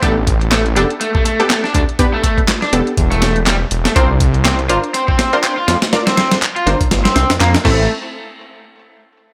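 This funky, swaggering breakbeat clip opens straight into a drop, with every part arriving at once. A sampler-style breakbeat kit sits up front, gritty and compressed, with a thumpy kick, a medium-tuned snare, hi-hat and crash cymbal, carrying a tape-warm character as though re-recorded in a small room. A detuned saw bass, thick, saturated and menacing, rumbles up front beside it. An overdriven electric guitar plays a bright, raw, picked riff with digital delay, while a bold, punchy orchestra-hit-like synth stab adds layered, detuned sawtooth punctuation with its own reverb and delay. Further back, a produced electronic garage kit layers handclaps and bright hats, a light reverb wraps the whole mix, and the full groove breaks off near 7.9 seconds, leaving the piece suspended until its cut at 9.3 seconds.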